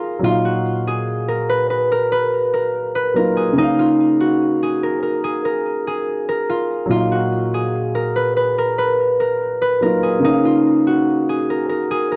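A half-time 4/4 hip hop pulse carries this ominous, menacing fragment of a longer piece. A fingerpicked concert harp plays the melody up front with a ringing, acoustic tone and tape echo, while a dark grand piano accompanies with mellow, deep-bass chords of short sustain, moving between Ebmadd9 and Bbm. The sound is dry and gritty under a light reverb, its top end filtered off above 7.7 kHz.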